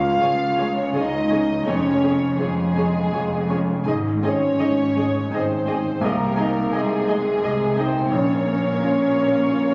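Moving in a flexible 3/4 at 84 BPM with uneven, rubato beats, this lush, lyrical romantic movement for piano and orchestra in Db major is cut from a longer piece, its harmony passing from Db through Ab to Bbm. A smooth, vintage-toned grand piano carries the melody across a low-to-middle range, while a muted violin section with light vibrato and a soft attack adds a high, veiled melody of its own from 0.2 seconds. A second muted violin section, dark, con sordino and very quiet with vibrato, sings a second line beneath, and a background viola section fills in bowed accompaniment. The mellow French horn section sits up front with sustained chords, distant and roomy despite its prominence, as muted cellos and double basses ground the bass with soft, shadowy bowing. A round, barely audible timpani played with soft mallets on calf heads sounds only in the first 0.6 seconds, and the whole is heard through moderate concert hall reverb captured on a phone in the room, with added club reverb, compression and a dulled top end.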